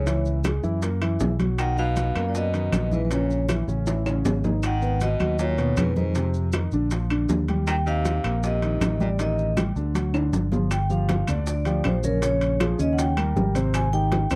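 A brisk, straight 4/4 groove at 158 BPM drives this sunny, sophisticated Afro-Cuban jazz excerpt, with congas, bongos, timbales, maracas and claves entering almost at once. The punchy, amped fingered electric bass sits up front, while ringing, hard-hand congas with a compressed, saturated edge and round, low-tuned, soft-hand bongos stay in the background beside woody claves; vintage metal-shell timbales and grainy maracas complete the percussion. A vibraphone played with medium mallets, motor off, carries the melody in a metallic, close-miked tone, and a dark concert grand piano supplies mellow accompaniment with deep bass. A clear baritone saxophone with light vibrato and scooped notes adds a second line through tape echo until 9.5 s. The harmony travels through a colorful chain of chords from Dbm to Abmaj7, marked by two drum fills, the second leading into a new section at 10.7 s, in a dry, close 1970s-style studio sound.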